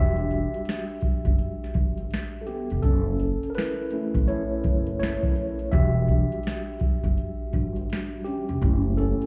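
Lo-fi hip hop at 83 BPM with a swung 16th-note feel, this melancholic, hazy excerpt in E dorian sways between Em7 and F#m7. A mellow, low-pass-filtered tine electric piano takes the lead with a clean solo that sounds as if played through its built-in speakers. Beneath it, a growly, woody pizzicato upright bass plays from the start, and a booming analog drum machine with deep kick, crisp snare, metallic hats and finger snaps enters at 0.2 seconds, all heard muffled as though through a wall with a touch of club reverb.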